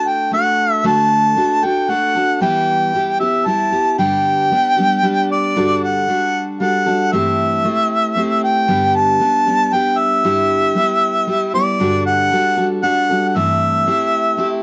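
Acoustic folk for a duo or small band, this short cut from a longer piece moves at 115 BPM in a straight 3/4, with a nostalgic yet hopeful mood and tuning set to A4 = 438 Hz. A harmonica carries the melody up front throughout, its tone warm with vibrato and a smooth top, played in a classical-leaning solo style. Beneath it, a picked steel-string dreadnought guitar provides the accompaniment, also up front, with a warm acoustic character spanning from G2 to A4. The opening section moves through D, Em and G, and from 5.6 s the harmony settles over a G bass with chords such as D/G, Am/G and Em7/G. Light reverb and the worn, warbling sound of old cassette tape, with its wavering pitch drift, give the whole recording a faded, keepsake quality.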